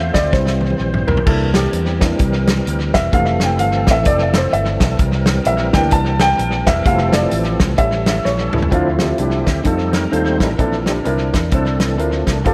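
Uplifting and hopeful, this uptempo gospel excerpt in F major swings along at 129 BPM in 4/4, with a dark, woody upright piano taking the lead over a round, amped fingered electric bass and a punchy, up-front country drum kit, both piano and drums coloured by tape echo in an echo-heavy mix. A bright, reedy tonewheel organ holds sustained chords through a slow rotary speaker with chorus vibrato and audible key click. At 8.7 seconds, after a drum fill, the organ takes over the solo while a very quiet French horn section enters with soft-attacked sustained chords as the harmony moves through Dm9, F7 and Bbmaj9#11.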